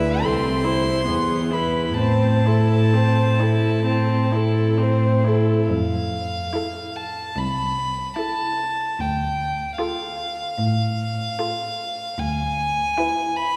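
Classical slow romantic movement for string quartet, melancholic and yearning, moving in a rubato 4/4 through a brief passage cut from a longer piece. A warm, floating first violin carries the melody up front over a dark, woody second violin with vibrato, a rich viola accompaniment and a pure, smooth-topped cello bass that stops at 12.8 seconds, all four bowed sul tasto by single players. The harmony drifts from A minor through Fmaj7 and Dm toward E7/D, and the whole ensemble rings in a wet concert hall with a long 2.6-second reverb.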